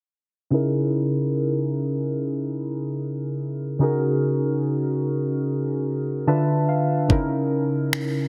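Contemporary R&B at a slow 73 BPM with a swung 16th-note feel in C# dorian, carrying a longing, late-night mood in this brief cut from a longer piece. Muted, felt-like synth keys sit up front from 0.5 seconds, intimate and dark, with a chorused, filter-swept tone that moves from C#m69 through F#69/C# and Dm69 before returning home, adding a fill at 5.9 seconds. A smooth, produced electronic kit of finger snaps and a knocking kick arrives only at 7.1 seconds, all set in a lush hall reverb within a dense, heavily limited modern master.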